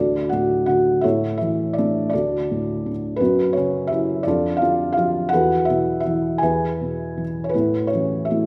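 Swaying in a rubato 6/8 at about 55 BPM to the dotted quarter, with uneven beats, this calm, peaceful classical piece for lyrical solo piano sits in A major and is cut from a longer work. A felt-muted upright piano plays alone throughout, spanning D2 to G#5. Its soft, dark, thick-felt tone sits up front with audible action noise for an intimate, vintage character. It moves through D, A, F#5, Dm/F and Esus4 before settling on Aadd9 at 7.5 seconds, all bathed in the wet reverb of a recital hall.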